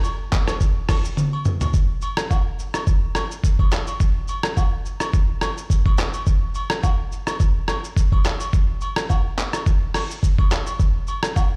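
A lo-fi sampler-style drum kit and a quieter layer of agogo bells and woodblock open together at 0.0 seconds, setting a joyful, sunny afrobeats groove in 4/4 with a gentle swing on the sixteenths. The kit sits up front, compressed, pitched down and tape-warm, with a muffled, thumpy kick, handclaps, hi-hat, rim click, shaker and toms that sound re-recorded in a small room. Further back, the agogo bells and woodblock carry an acoustic, vintage, band-limited colour, joined by an egg shaker and group handclaps. A drum fill at 1.2 seconds leads from the brief opening into the longer main section at 1.7 seconds, where both parts carry on to the end. The whole passage, cut from a longer piece, sounds as if played over a big sound system in a bare room, bathed in a large studio reverb.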